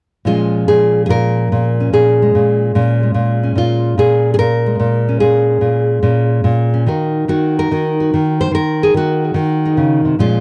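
A bright, up-front nylon-string guitar, fingerpicked on fresh strings with audible finger squeak, plays a smoky, swinging solo jazz excerpt in a loose rubato feel, moving from Bbm7 to Ebm at 6.9 seconds in a dry, close 1970s-style booth with a deep classical tone.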